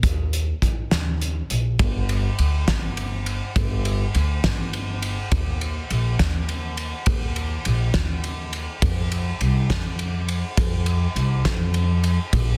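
Indie folk in G minor with a bittersweet, yearning mood, moving at 68 BPM in 6/8 as a building arrangement, where a woody pizzicato upright bass and a loose acoustic drum kit with a punchy kick, fat snare, dark cymbals and a pumping room sound play up front from the start, dry and densely limited, until the drums stop at 12.5 seconds and the bass at 12.6 seconds.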